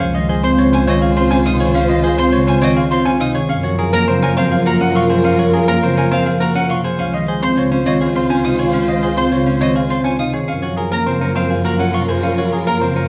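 Minimalist classical pattern music in 3/4 at 103 BPM, this propulsive, hypnotic passage in Gb lydian is cut from a longer piece and alternates between Dbmaj7 and Gbmaj9 every 3.5 seconds. A bright, brilliant grand piano carries the melody between Ab4 and Ab5, while a mellow French horn holds a soft-attacked second line on F4 in the background. The woody marimba, played with medium mallets on padauk bars, stands forward as the accompaniment, and a clean, compressed electric guitar picks arpeggios in the middle register. A distant studio string section sustains chords with vibrato and portamento, and a bowed double bass section anchors the low end between Db2 and Gb2. From 0.4 seconds a single expressive violin adds soft-attacked arpeggios up to Eb6, all set in a wet recital hall reverb with a dark, warm production.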